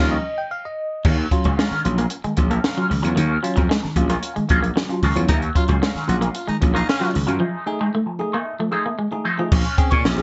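An overdriven, growly slap bass sits up front in this sly, cool funk cut, while a bell-like tine electric piano with phaser takes a brief solo over the opening band accent, with a twangy envelope-filtered guitar with wah and lush chorus already in play, before a compact cocktail drum kit with a high-tuned snare and punchy kick enters at 1.0 seconds, joined by a slightly broken-up fingered guitar riff and a breathy, raspy baritone saxophone carrying the second line from 5.3 seconds, inside a moderate club reverb.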